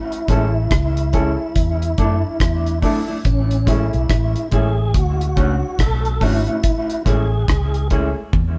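A light room reverb wraps this short, sunny roots reggae cut from a longer piece, played live by a band in one room with a relaxed, swung sixteenth-note feel. The dry, tight-kicked drum kit and the round, punchy, foam-muted electric bass sit up front, while a clean fingered electric guitar with tape echo and a woody, slightly detuned upright piano with boxy short stabs fill in around chords moving from Amaj7 through E7sus4 and Dmaj7. A mellow tonewheel organ carries the melody with key click, chorus vibrato and a fast rotary speaker, stopping at 7.9 seconds before a drum fill at 8.3 seconds closes the passage.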